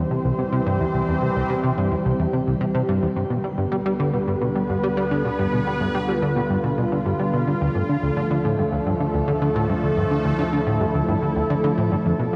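A straight 4/4 pulse at 108 BPM drives this ambient, sequencer-led space music in D dorian, tuned slightly low to A4 = 435 Hz, with an expansive and mysterious mood. Up front, a punchy, funky analog bass riff with a fast attack and a decaying filter pluck mixes sawtooth and pulse waves with a metallic edge of ring modulation, colored by analog chorus and analog delay. Beside it, a sweeping resonant pad holds sustained chords, its detuned sawtooth tone and airy noise layer rising through a slow attack and filter swell into a bright, evolving shimmer with chorus and long release. Beneath both, a deep, round sine sub bass sits in the background on a low D, fading in across the fragment. The harmony moves from C to G/D at 3.2 seconds and settles on Dm at 7.6 seconds, all bathed in a lush hall reverb that leaves the mix dreamy and soaked.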